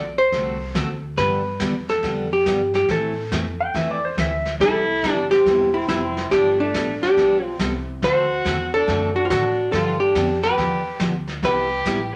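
This swinging, playful western swing excerpt moves at 140 BPM in a shuffled 4/4, with an up-front, dark hollow-body jazz guitar carrying the melody over bright, full-bodied picked acoustic guitar chords, a woody, thumpy pizzicato upright bass on gut strings, and a vintage kit played with brushes, its tight kick and rolled-off top pumping in a small room. A compressed, clean lap steel slides in with volume swells at 3.6 seconds for a brief fill, and a smooth-topped bowed fiddle with light vibrato takes up a second line from 4.6 seconds. The chords wander from D7 through G, Amadd9 and Cmaj7, all set in a wet studio reverb.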